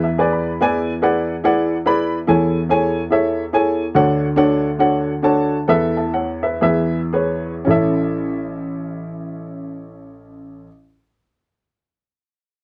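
A short upright piano fill opens this hopeful, uplifting gospel excerpt, cut from a longer piece. The tempo sits between 108 and 144 BPM in 4/4 with a swung eighth-note feel. The single upright piano carries the accompaniment across a broad register from A1 to B5. Its tone is dark, mellow and woody, natural and placed up front. Over an A major progression moving from E and E7 through Amaj7/E, Dmaj7 and Esus4 before resolving to A, the music slows from 4.0 seconds, and the piano ends at 10.7 seconds. The sound is that of a dry, close 1970s-style studio recording with light reverb.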